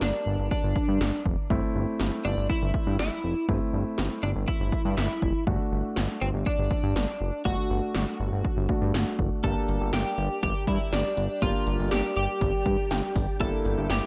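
A clean, picked twelve-string electric guitar carries the melody up front, its compressed tone glinting through analog chorus and shimmer reverb in this cool, nocturnal synth-pop excerpt at 121 BPM in G dorian. Beneath it, a polished grand piano plays the accompaniment with its own shimmer reverb and adds a brief fill at 12.7 seconds. A fat, detuned sawtooth bass with tube saturation and a filter sweep sits up front alongside 80s electronic pad drums, which bring a punchy kick, gated snare and metallic hi-hats in a straight 4/4. The chords move from Gm to Am and D, then back to Gm as a vintage string machine with cellos enters at 9.4 seconds, laying dark, warbling sustained chords with a slow attack and sub octave in the background. The recording is dry and gritty with light reverb, a hardware sound that keeps the late-night mood crisp.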